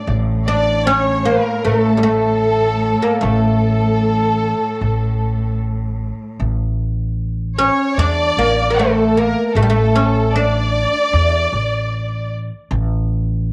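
A wet spring reverb and studio ambience surround this stately, festive Turkish excerpt. A deep, woody fretless oud plucked with a plectrum carries the melody up front on its double strings, while a rich, focused bowed violin section adds a second line with vibrato, and a smooth, even cello holds a low drone in the background until 6.5 seconds. Pizzicato upright bass on steel strings anchors the bottom and plays alone after the oud and violins stop at 12.3 seconds, ringing on to 13.5 seconds.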